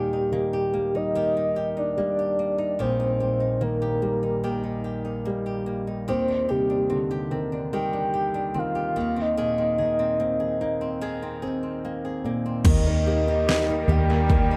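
A soft, octave-layered synth lead carries the melody between G4 and G5, its round, sub-octave tone colored by chorus, tremolo and analog delay, and it sits up front in this emotional, heartfelt pop ballad excerpt in Eb major at 73 BPM. Beneath it, a clear concert grand piano plays the accompaniment with an intimate, polished sound, long sustain and audible action noise, its own analog delay adding echoes. A fingerpicked flamenco guitar weaves acoustic arpeggios through the harmony as the chords move from Eb to Cmadd9/Eb and Abadd9/Eb. A punchy, overdriven electronic drum kit with crash, toms and a deep snare enters at 12.6 seconds. At 12.7 seconds the music returns to Eb, joined by a dark, foam-muted electric bass holding Eb2 and a studio string section sustaining bowed, expressive chords. Light small-room reverb gives the echo-heavy mix a close, heartfelt atmosphere.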